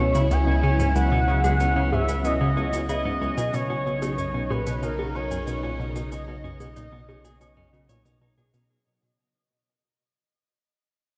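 Ambient, sequencer-driven space music with a hypnotic, expansive mood, cut from a longer piece and fading out from 1.8 s as the harmony moves from C#m to B. A smooth, expressive sawtooth lead with vibrato, chorus and tape echo carries the melody up front over swirling, vintage string-machine chords steeped in ensemble chorus and phaser, while a dark, scooped clean electric guitar picks echoing arpeggios and a round analog pluck with a filter sweep plays a low riff. A deep sine sub bass anchors the bottom, electronic shaker and bongos re-recorded in a large room sit quietly in the background, and a lush hall reverb soaks the dreamy mix.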